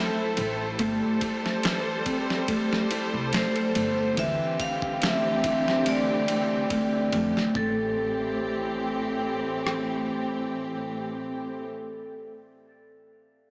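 A smooth, bowed string section and a fingerpicked nylon-string guitar, its arpeggios trailed by analog delay, open this brooding, melancholic trip hop fragment in A minor at 71 BPM, moving from Am through Gsus24 and D9sus4 to Am7. At 0.4 s a gritty, compressed sampler-style drum kit with a thumpy kick, rim click and ride enters with a lightly swung feel alongside woody pizzicato upright bass, and from 3.3 s a bright, ringing hard-mallet vibraphone carries the melody through dub echo until 12.3 s. The dreamy mix is soaked in a lush hall reverb and has a small-speaker sound.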